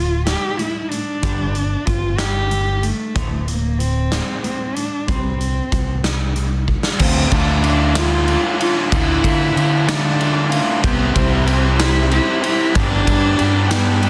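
Quiet-loud alternative rock in a slow, cathartic and angsty 6/8 at 62 BPM, where a single dark, woody bowed cello with vibrato and slapback echo carries the melody over a bright, growly fingered electric bass, a big-room arena drum kit with a punchy kick up front, and warm clean electric guitar arpeggios colored by harmonic tremolo in the background, until a drum fill at 6.7 s ushers in a raw, double-tracked overdriven garage guitar riff at 7.0 s as the music settles into D dorian over Dm, C and G chords, all within light reverb and a dense, heavily limited modern master.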